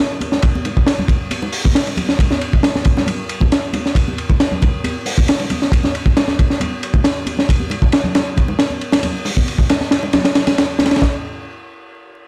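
Dry, with a layer of vinyl crackle, this funky, energetic breakbeat clip from a longer piece runs at 136 BPM in a straight 4/4 and sits in a drop from the start until 11.0 seconds. A gritty, saturated acoustic drum kit sits up front with a punchy kick, a high-tuned snare, dark hi-hat and ride cymbals, and a rolled-off top. Bright, compressed congas and bongos played with soft hands stay in the background from 0.2 seconds, before a brief closing section begins at 11.0 seconds.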